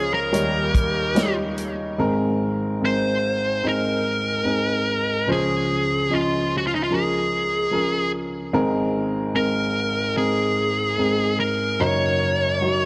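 Heartfelt and tender, this pop ballad excerpt moves at a slow 74 BPM in Ab mixolydian, with a distorted, fuzz-soaked electric lead guitar singing the melody up front over a smooth, vintage grand piano accompaniment that runs throughout. A clear, distant woodwind section holds sustained chords in the background only until 2.0 seconds, while a natural acoustic drum kit with a tight kick and medium-tuned snare plays briefly from 0.3 to 1.8 seconds. Chords shift through Abadd9, Dbmaj7 and Gb6, and a concert hall reverb gives the dark production a roomy glow.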